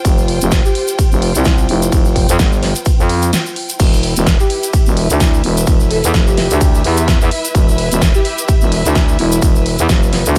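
A growling, thick FM bass pumps against a punchy, up-front electronic kick in this gritty, aggressive bass house excerpt at 128 BPM in E phrygian, where a big-room kit with a huge snare, crash, hi-hat and ride, a grainy egg shaker, lush bowed dark symphonic strings that also pump, and an airy, dreamy lead with chorus and dub echo sitting in the background all play over a dry mix that shifts from Fsus2 to Em7 at 3.8 seconds, just after a brief break from 3.3 seconds.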